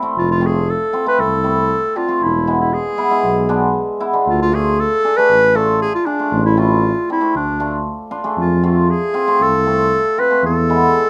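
A mellow, shimmering cimbalom rings out first, joined at 0.2 seconds by a warm, classical-style solo clarinet melody and a dark, breathy, close-miked tuba bass in jazz style, all three up front in this bittersweet, soulful klezmer excerpt at 117 BPM in straight 4/4. It moves through F, E, D minor and A minor in a small room with moderate reverb and a faint mains hum.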